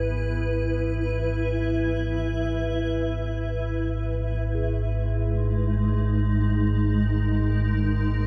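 From the first second, a deep, rumbling drone with phaser, subtle chorus and a filter sweep sits up front beneath a bright, blurred granular cloud pad whose sustained chords move from E to G#5 at 4.5 seconds, while a very quiet bronze singing bowl rings with slow metallic beating, and this free-time fragment of a longer dark ambient piece unfolds in a vast, echoing space that feels unsettling and ominous.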